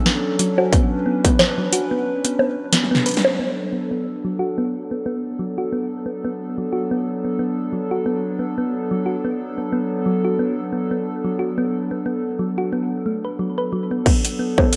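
IDM with a cerebral, intricate mood and a lightly swung sixteenth-note feel, cut from a longer piece. A hollow, flute-like pad holds sustained chords throughout, dark and up front with a slow attack and chorus, while a round, tine-like synth pluck in the manner of a thumb piano spins arpeggios beside it, its gentle FM tone carrying chorus and tape echo. Punchy analog drum-machine hits with metallic hats, bongos, a snare and a crash open the track, overdriven and re-recorded in a large room, joined briefly by a distorted, tape-warm electronic kick. A drum fill and a band accent close the opening passage at 3.4 seconds, where the harmony moves from Dmaj7 to Bm7, the drums drop out, and a filter sweep runs across the arpeggio sound. The drum machine and kick return only at 14.1 seconds, and a lush hall reverb wraps a rough, home-demo mix.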